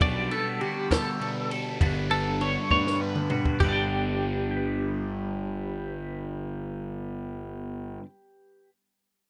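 A bright, twangy twelve-string electric guitar plays tremolo arpeggios, while a second, phased twelve-string sits up front and picks a chordal accompaniment beneath it and a double-tracked overdriven guitar plays a riff, all in a playful, sunny math rock and midwest emo vein in 6/8. A fuzzy, punchy picked bass anchors the low end, and a compact cocktail drum kit with dark cymbals and a high-tuned snare plays until a fill at 2.7 seconds and drops out at 3.7 seconds, leaving the guitars and bass to carry on. The dry, rough home-demo sound makes this short fragment of a longer piece feel close and immediate.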